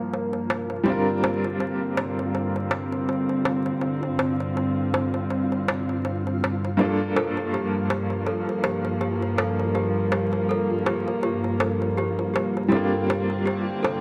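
A bright, woody upright piano with tremolo and tape echo opens this smoky, melancholic trip hop excerpt in G minor at 81 BPM over gut-toned, period-style strings moving through a filter sweep, a grainy, flickering texture in the background and close, dry darbuka, with a delicate, slightly out-of-tune celesta adding delayed arpeggios from 6.8 seconds, all set in a dark small-room sound with vinyl crackle.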